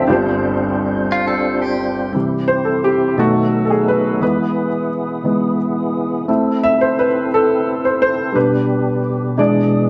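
Set in a light reverb, this hopeful, reverent slow gospel passage in 6/8 at 58 BPM (dotted quarters) in C major pairs a worn, woody, slightly detuned upright piano up front with fat, percussive tonewheel organ chords spun through a fast rotary speaker and chorus vibrato, while a bright, twangy clean electric guitar with spring reverb adds a brief second line from 1.1 to 2.1 s before the piano takes a solo from 2.1 s over a progression that opens on G7sus4 and ends on E7.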